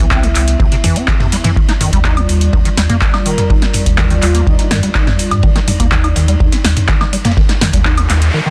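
A dark analog pad with sidechain pumping, a rubbery, resonant acid bass riff with overdrive and tape echo, and a round sine sub bass open this trippy, playful acid house excerpt over shifting Cmaj7 and Ebmaj9 chords. An overdriven electronic kick, a punchy analog drum machine with metallic hats, claps, toms and woodblock, and a dry, dark acoustic kit with ride and snare tucked in the background drive the straight groove. A soft, breathy flute-like lead with vibrato and delay drifts in from 3.3 to 4.7 seconds, and a noise sweep enters at 7.7 seconds in a dense, heavily limited, nearly reverb-free mix.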